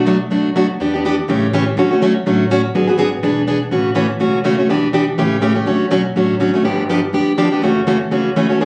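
A bright, picked parlour-style steel-string acoustic guitar sits up front, comping through a lively, playful jazz manouche excerpt at a brisk 246 BPM with a swung feel, while a woody, thumpy gut-string upright bass plucks in the background, moving from Bm7 and Em7 changes into A major at 3.7 s, all heard through a phone recording of a club room with a short reverb and compression.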